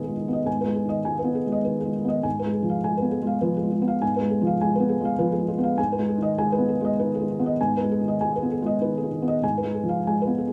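A light reverb surrounds a felt-muted upright piano that sits up front, its tone dark, intimate and thickly muffled. This reflective, melancholic neoclassical minimalist excerpt moves in a rubato 3/4 at about 100 BPM, with the solo piano ranging from Ab2 to Ab5 over 10.5 seconds. Its harmony sways between Abm and Fdim/Ab.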